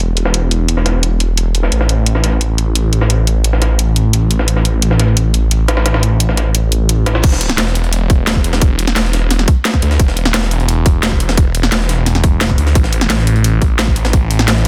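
Dark technical drum and bass at 174 BPM, mechanical and tense, built on a swirling, thick detuned saw bass with phaser and tube saturation, while an overdriven drum kit with cracking snare and bright hats is joined by a gritty, pitched-up jungle sampler-style kit with a high-tuned snare, and a tight, overdriven electronic kick drops in at 7.2 seconds under a dense, heavily limited master with little reverb.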